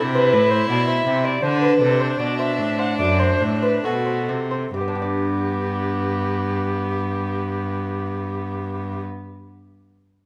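A mellow alto recorder carries the melody in this short, serene baroque-style sonata movement, its pure wooden tone set back at a distance and shaded with gentle vibrato and a soft attack. A single bowed violin plays a second line beneath it, rich and expressive with vibrato and portamento, also heard from some distance. Up front, a focused solo cello anchors the bass with its own vibrato, while a delicate fingerpicked lute with doubled gut strings supplies accompaniment in the background and rings on briefly to 9.3 seconds after the other parts stop at 9.0. The dance-like opening slows down over its first 4.7 seconds, moving from an A minor chord to D7 before settling onto G as a new section begins. A moderate recital hall reverb surrounds the ensemble in this fragment cut from a longer piece.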